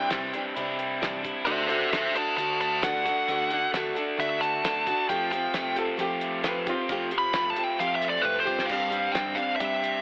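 Heard through a boxy, telephone-like filter with a moderate plate reverb and small-room ambience, this excerpt from a longer folk rock and heartland rock piece has an open-road, jangly mood in a straight 4/4. Up front, a nasal lead guitar with a parked wah, overdrive and digital delay plays a solo over a Cadd9, D and Fadd9 progression, while a picked, plugged-in steel-string acoustic guitar plays underneath with audible finger squeak. A double-tracked, scooped overdriven electric guitar drives a riff, and a round hollow-body short-scale bass sits in the background. The cloth-damped drum kit sounds thuddy, with a fat snare, tight kick and dark cymbals. A worn, slightly detuned upright piano with audible action noise adds a brief second line from 5.8 to 7.1 seconds, and a drum fill at 8.2 seconds leads into a new section on Gsus4 at 8.7 seconds.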